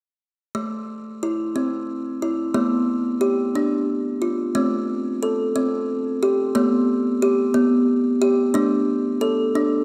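A lone kalimba opens at 0.5 seconds with arpeggios in this hypnotic, gentle world-meditative passage, which is cut from a longer piece. It moves at a slow 60 beats per minute in a straight 6/8 feel in A minor, staying within the range of A3 to A4. The instrument's woody, hollow-box timbre carries a bright thumbnail pluck that rings out, and it is close-miked so it sits full and up front. That dry tone is placed in a wet plate reverb with a long 2.5-second tail. The harmony rocks between A minor and G over A, with a second pass of that cycle beginning at 4.6 seconds, before settling on D5 over A near the end.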